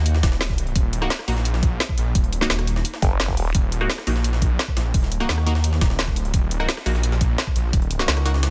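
Futuristic and aggressive, this cut from a longer dark technical drum and bass piece runs at 172 BPM in a straight 4/4, sitting on an Eb minor chord throughout. A thick, lush detuned saw bass holds the low end from the start, its unison sawtooth body thickened with chorus and tube saturation and placed up front. The main drum kit brings a woody snare, rim click and bright hats, overdriven and forward, while a gritty, pitched-up jungle sampler-style kit murmurs in the background with filtered hats and a medium-tuned snare, and a knocking, tape-tinged electronic kick anchors the beat with a small-room character. From 1.0 seconds, a muted, deep dub chord stab plucks and decays through phaser and tape echo. At 3.0 seconds, a nasal, resonant vowel-sweep wobble bass cuts in briefly with its formant-filtered wobble. The mix is dry, dense and heavily limited in a modern style.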